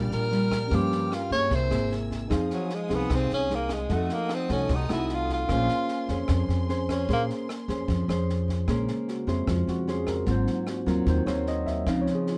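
Bossa nova with a wistful, intimate mood, this short fragment opens with a breathy tenor saxophone carrying the melody up front, its subtone playing full of vibrato and scooped notes in a jazz style. Beneath it, a fingerpicked nylon-string guitar sounds full-bodied and deep in the classical manner, sitting up front alongside a worn, slightly out-of-tune tine electric piano heard through its built-in speakers. A pizzicato upright bass with steel strings gives a woody, growly low end, while a compact cocktail drum kit keeps things dry with a punchy kick, rim clicks and a high-tuned snare. A lush symphonic string section holds soft-attack bowed chords in the background until 8.7 s, when the saxophone has already finished and the electric piano takes over the solo spot for the remaining moments. The harmony drifts through rich extended and altered chords, and a moderate studio reverb wraps the small ensemble.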